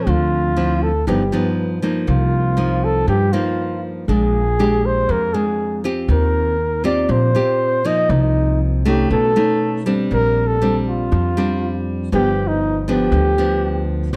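A dry, close 1970s-style studio sound with small room ambience frames this romantic, breezy bossa nova in Bb major at 120 BPM, cut from a longer piece. A breathy, mellow flugelhorn carries the jazz-style solo melody with vibrato, scooped notes and a smooth top, touched by slapback echo, while a bright, fingerpicked classical nylon-string guitar and a woody, thumpy pizzicato upright bass on gut strings sit up front beneath it. The harmony moves through chords such as Dm9, G7alt and Eb69 before a second section opens on Bb69 at 10.1 seconds, and the flugelhorn drops out at 13.9 seconds as guitar and bass carry on to 14.2 seconds.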